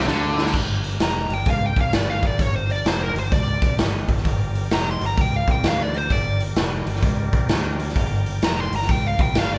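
A smoky, brooding slice of blues rock and southern rock in G minor at 130 BPM, in swung 4/4, opens with a drum fill and a brief, bright, double-tracked guitar riff that stops at 0.5 s. From 1.0 s a dark, smooth lead guitar solos up front through wah and overdrive. Beneath it play a growling fingered bass, direct and amped; a punchy raw garage kit with a medium-tuned snare and rolled-off top; and a gritty tonewheel organ holding sustained chords in the background with key click and third-harmonic percussion, all from a band playing live in one room with light reverb.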